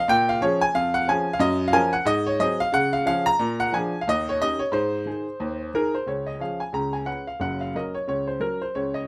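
A boxy, intimate grand piano sits up front with audible action noise and short sustain, carrying this exuberant, playful stride jazz excerpt alone from 0.0 to 9.1 seconds across a range from Gb1 to Bb5. At 180 BPM in 4/4 with a swung eighth-note feel, it moves through Db major changes such as Bbm7, Gbmaj7, Ab7 and Eb7 before a new section begins at 6.1 seconds. A moderate club reverb places the piano in a club room.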